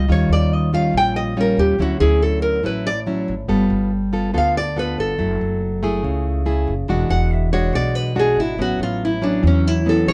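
In a straight 4/4 feel, this sophisticated, romantic bossa nova fragment features a fingerpicked nylon-string guitar taking the melody as a solo throughout, sitting up front with a classical, fresh-stringed tone. A second fingerpicked nylon-string guitar supplies the accompaniment, its finger squeaks audible as it moves through rich chords such as Dmaj9, G9 and F#m9 before resting on A69. Beneath them, a woody, growly pizzicato upright bass anchors the low end, and the trio plays live together in one room with moderate studio reverb.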